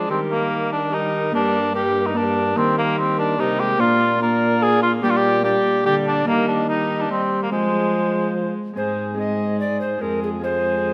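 This solemn, courtly renaissance-style consort dance in 3/4 at 145 BPM opens with five players together: an airy, close-miked tenor recorder with a crisp chiff and vibrato carries the melody, while a mellow, up-front cor anglais sings a second line beneath it. A single bowed viola with a reedy, gut-string tone and a ringing, fingerpicked harp set in the background fill out the accompaniment, and a warm solo trombone with vibrato holds the bass. Moderate recital hall reverb surrounds the ensemble as the harmony moves from Eb and Gm toward Fm, shifting to a new section on Ab at 8.8 s in this short cut from a longer piece.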